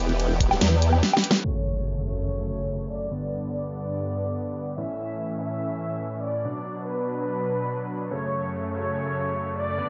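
A formant-sweep wobble bass, detuned and overdriven with chorus, growls up front in the first second of the opening drop of this menacing, chaotic heavy wobble dubstep excerpt at 144 BPM in a half-time feel, alongside a knocking electronic kick and a dubstep kit with a huge snare, hi-hat, ride and woodblock that ends in a drum fill by 1.4 seconds. Lush, bright supersaw chords with sidechain pumping sustain throughout, moving from Em through F#m, G, A and Bm in F# phrygian. At 1.4 seconds an electronic impact hits and a dark, reedy violin section with light vibrato and tape echo takes the melody from a distance, while a filter sweep runs under a light reverb and a muffled top end.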